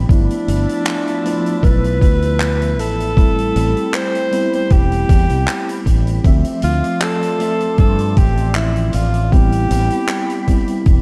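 Nostalgic and hazy, this slow vaporwave excerpt at 78 BPM in A minor drifts over a lightly swung 4/4, moving through G13, Am9, Dm7 and back to Am9. A bright alto saxophone with light vibrato and tape echo carries the melody over a mellow tine electric piano soaked in lush chorus, a thick detuned sawtooth pad with phaser and 12-bit sampler grit sitting in the background, and a warm, direct fretless bass up front. A thumpy sampler-style kick drives the beat while a swinging big-band kit adds handclaps and hi-hat through gated reverb, all in a light studio ambience.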